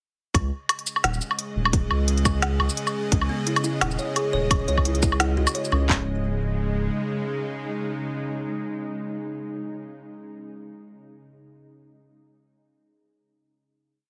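A swung, half-time beat drives this dark, tense piece of half-time drum and bass, where a trap kit's hard-clipped kick, floor tom and clap sit up front beside an organic electronic kit's woody snare, smooth hats, shaker and low woodblock, while a deep, saturated sub bass sustains long notes, a bright, string-like drone with vibrato and sidechain pumping enters at 1.2 seconds, an eerie metallic FM drone with chorus lingers in the background, and a hollow-toned kalimba through digital delay repeats a step sequence from 3.1 seconds before the drop gives way to a final chord at 5.9 seconds, in a heavily compressed, radio-like mix with moderate digital room reverb.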